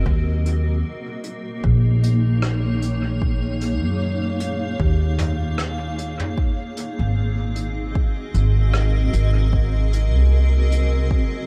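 A deep electronic kick and a distant, roomy brush kit with hi-hat, rim click and toms set a slow 76 BPM pulse in 4/4, swung on the sixteenths. This meditative, hazy slice of ambient dub sits in Eb dorian, tuned slightly sharp to A4 = 441 Hz, and it is cut from a longer piece. Up front, a woody pizzicato upright bass on steel strings holds the low end. Above it, a granular cloud pad sustains blurred, evolving chords with a slow attack and long release, bright and full-bodied, roughened by vintage 12-bit sampler grit and bathed in its own reverb. Dub echo trails the rolled-off brush kit, and a dark studio reverb frames the mix as the harmony moves from Ebm9 at 0.1 s to Ab7 at 6.4 s.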